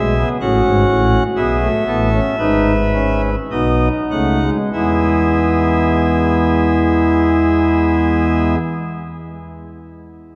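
In a straight 3/4 pulse that slows over the first 4.7 seconds and moves between 46 and 66 BPM, this brief fragment of a baroque-style four-part fugue in E major unfolds with elegant, stately poise. A pipe organ plays alone on a nasal cornet solo stop with a romantic voicing, placed up front and ranging from G#1 to F#5, tuned to A4 = 437 Hz. The harmony passes from F#m through E and B7 before settling on E at 4.7 seconds, all bathed in the long, echoing reverb of a vast cathedral.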